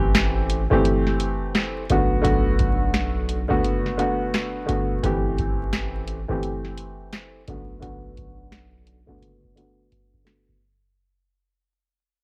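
A swung, booming analog drum machine sets a reflective yet tough boom-bap hip-hop groove at 86 BPM, with a deep kick, tonal snare and metallic hats sitting dry and up front, closing with a drum fill from 9.2 seconds. A worn, woody, slightly detuned upright piano carries the Am7 and Bm7 chords through a cassette-tape haze and a filter sweep, while a thick, saturated sine sub bass holds down the low end in the background. Vinyl crackle and a home-cassette character color this excerpt as it fades out across its full length.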